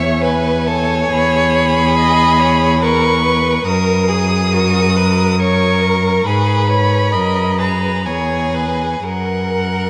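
A classical slow romantic movement for string quartet, this tender, lyrical passage moves in a rubato 3/4 at roughly 58-72 BPM. It is cut from a longer piece. A warm, focused first violin carries the melody high above, bowed with vibrato and a smooth top, while the second violin adds a rich, expressive second line marked by vibrato and portamento. Beneath them the viola plays a clear, close accompaniment, and a rich cello, focused and up front, anchors the bass with vibrato. All four players sound together from the first moment through 9.9 seconds. The harmony drifts from E through C#m7/E and F# to G#m7 before returning to E and F#, all set in a vast, echoing cathedral space with a long, wet reverb.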